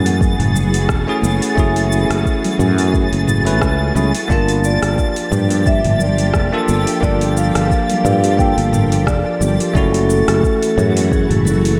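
A relaxed 88 BPM groove in 4/4 with a gentle 16th-note swing sets up this short sunset chillout fragment, carried by an electronic kick drum with a soft, produced sound and a smooth R&B kit of metallic hi-hats, rim clicks, shaker and toms, both re-recorded in a large room, while very quiet, high-tuned congas add a thin, vintage skin tone. Underneath, a growly fretless electric bass sits up front, bright and direct with a touch of tube saturation. A barky, bell-like tine electric piano plays the accompaniment through a diffuse ambient delay, and a soft string machine spreads silky, warbling sustained chords with ensemble chorus. High above, a twinkling granular texture adds an octave-up shimmer bathed in its own reverb. At 4.3 seconds a vibraphone played with medium mallets and the motor off enters with the melody, its metallic ring echoing through the same ambient delay as the harmony moves from F#m9 to Gm9 and back to F#m9 at 9.8 seconds, all set in a lush, dreamy hall that gives the piece a warm, unhurried glow.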